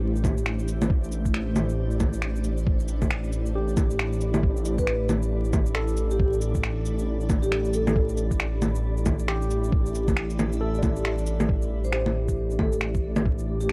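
A dry, gritty hardware sound laced with vinyl crackle frames this rainy, nocturnal future garage cut in A minor, moving at 136 BPM with a swung sixteenth feel as Am7 shifts to Em7/A and back. A deep, rumbling detuned saw bass sits up front with tape-kissed shaker, bongos, cabasa and finger snaps over a muffled, thumpy pitched-down kick, while a blurred granular cloud pad and a barky tine electric piano pump under sidechain compression and a flickering grainy texture hovers in the background. A mellow vibraphone with soft mallets and tape echo carries the melody from 4.8 seconds, the kick drops out briefly at 11.0 seconds, and the vibraphone returns at 11.8 seconds before the fragment is cut off.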